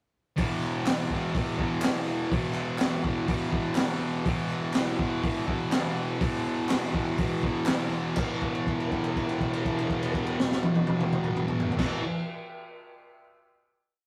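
The recording has a rough rehearsal-room sound, with tube saturation and a moderate stone-room reverb around the players. This is a raw, swaggering garage rock piece at 123 BPM in a straight 4/4, built on an E5 chord. A thick, bright fuzz guitar sits up front, double-tracked and strumming chords in a low register. Beside it, a crunchy breakbeat drum kit drives a garage stomp groove, with a punchy kick, a high-tuned snare, dark cymbals, toms and a gritty, rolled-off top. A hollow group handclap adds a very quiet, distant pattern from a larger space until 8.4 s. The verse gives way at 8.2 s to a final chord with a held note that rings until about 11.8 s, just before the close at about 12 seconds.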